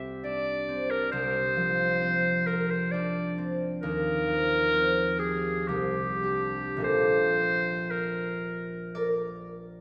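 Luminous and pastoral, this fragment of an impressionist classical duo drifts in a rubato 3/4, with concert harp ringing out fingerpicked chords from the start and a bright, vintage-toned clarinet entering at 0.2 s to sing a solo melody up front. The harmony glides through open, colored chords such as Csus2, Eb69 and Bbmaj7, and the harp sustains beneath the line until 9.8 s. A wet scoring-stage reverb places the pair further back in a resonant space.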